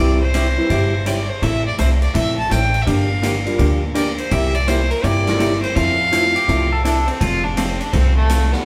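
Recorded live in a moderately reverberant stone room, this playful, cheerful western swing excerpt in F major swings at 166 BPM, with an up-front, earthy bowed fiddle carrying the melody over a growly, woody pizzicato upright bass, a dark, clean hollow-body jazz guitar, a boxy upright piano heard briefly at the start and again from 3.5 to 6.7 seconds, a big-band drum kit with a punchy kick working hi-hat, ride, snare and kick, and a twangy pedal steel sliding in with volume swells at 6.4 seconds.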